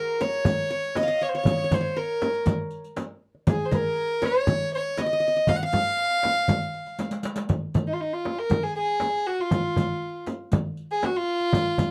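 A straight 4/4 pulse at 119 BPM from frame drum, darbuka and a background riq carries this melancholic, longing Arabic maqam ensemble piece in F maqam kurd, where a single bowed violin, soft-attacked, pure and floating, sings the melody up front while a bright, plectrum-plucked qanun adds a second line until 7.0 seconds, a drum fill at 7.0 seconds leads into a new section, and the dry, close 1970s-style studio sound with light reverb marks this cut from a longer piece.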